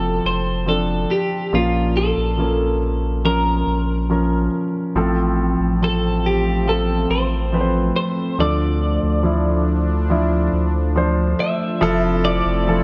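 Set in a light reverb, the recording places the guitar, piano and sub bass up front. This hopeful, emotional pop fragment moves in a straight four and is cut from a longer piece. A bright, twangy twelve-string electric guitar carries the melody, its clean picked tone compressed and treated with spring reverb, while a polished, present baby grand piano supplies the accompaniment. A deep, round sine sub bass with a fast attack holds the low end throughout. At 5.4 seconds a sweeping, resonant pad enters with sustained chords, its detuned sawtooth and triangle layers colored by ring modulation, chorus and a slow-attack filter swell. The harmony passes from F through Bbm, F/A and Dm before settling on Fmaj7 at 11.8 seconds.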